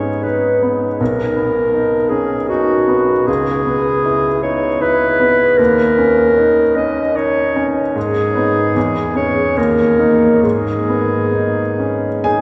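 A long, wet cathedral reverb, decaying over 6.4 seconds, surrounds this recording, which sounds as if heard from further back in the room. It is a solemn, yearning romantic classical duo for clarinet and baby grand piano in G# minor, moving in 3/4 at 63-82 BPM with a free, rubato feel, cut from a longer piece. The clarinet carries the melody as an up-front solo voice from F#4 to D#5, its tone warm with a soft attack and a smooth top. The piano accompanies from B1 to G#5, clear and intimate with long sustain, and its action noise is audible up close. Across the 12.4 seconds the harmony moves from G#m through Bmaj9 and C#m7 to a bare D#5, returns to G#m, then passes through C#m/E and D#5 once more before settling on G#m at 10.4 seconds.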